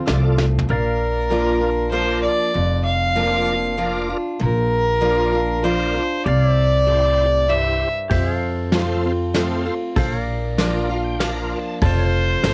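Easygoing and nostalgic, this short cut of honky-tonk and classic country sways in 3/4 at 97 BPM over F, Bb and C chords. Picked steel-string acoustic guitar with finger squeak, woody pizzicato upright bass up front, and twangy pedal steel sustaining chords through a subtle chorus set the bed, while a lightly overdriven tonewheel organ with key click turns slowly through a rotary speaker and takes a fill at 10.6 seconds. A soft brush kit with a fat snare plays a short fill before the nasal, bowed fiddle solo enters at 0.7 seconds, then the drums return at 8.1 seconds, all with a dry, cassette-tape home-recording sound.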